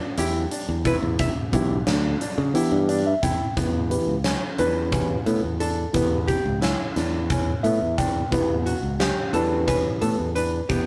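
Intricate and brooding, this short progressive instrumental cut from a longer piece moves at 177 BPM in an uneven 7/8 meter in E dorian, shifting from Em7 to Em at 3.6 seconds. A dark, hollow-body archtop guitar carries the melody over clear concert grand piano arpeggios, while a bright, punchy fingered bass and a huge arena kit with a fat snare and punchy kick enter at 0.2 seconds, the drums sitting up front. A mellow tine electric piano joins at 1.5 seconds with clean accompaniment and short fills, all captured as a rough rehearsal-room recording with light reverb.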